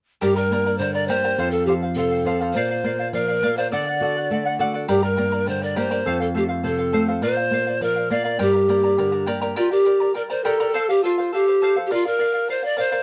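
A straight 2/4 pulse at 103 BPM drives this short cut from a longer Andean folk piece in G minor, its mood both melancholic and festive. A reedy bamboo pan flute carries the melody up front, its airy tone marked by a soft, chiffy attack and gentle vibrato, standing out clearly louder than the other parts. A fingerpicked charango supplies mellow, shimmering accompaniment from its double strings, some of them octave-doubled, while a fingerpicked flamenco guitar adds a warm acoustic lower voice until it drops out at 9.6 seconds. The harmony cycles through Gm, F, Bb and D, returning to the same phrase again for the closing stretch to 13.0 seconds. The sound is dry and close, with little reverb, in the manner of a 1970s studio recording.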